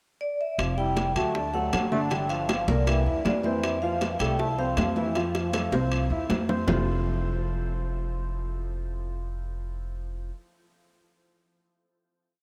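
A brisk, straight 4/4 pulse at 158 BPM drives this short, sunny and sophisticated Afro-Cuban jazz piece in F major, as woody, thumpy pizzicato upright bass plays a tumbao that anticipates the chords, bongos keep steady eighths with hand bell, ringing high-tuned congas add slaps and open strokes, and distant metal-shell timbales play a shell pattern and bell, capped by a drum fill from 5.2 to 6.7 s. Over this, a metallic vibraphone with medium mallets and fast motor vibrato states a motif-based melody from 0.2 s, shadowed by a distant trombone with vibrato and octave doubling, while an open upright piano plays a montuno in octaves through chords like Fmaj13, Gm7 and C7. The horn drops out around 6.3 s and the percussion around 6.8 s, leaving piano and bass to hold the final chord in a dreamy mix soaked in huge ambient reverb until 10.3 s.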